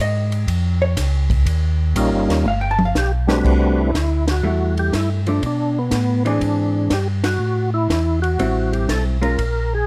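A compressed, clean hollow-body jazz guitar solo opens this greasy, bluesy soul jazz organ trio excerpt over a round, key-clicking tonewheel organ bass on a slow rotary speaker and a dry cocktail drum kit with dark cymbals, a high-tuned snare and a punchy kick, before a gritty, overdriven organ with percussive second-harmonic attack and chorus vibrato takes the melody at 2.0 seconds, all in a close, nearly reverb-free sound with swung eighths and band accents at 4.2 and 7.2 seconds.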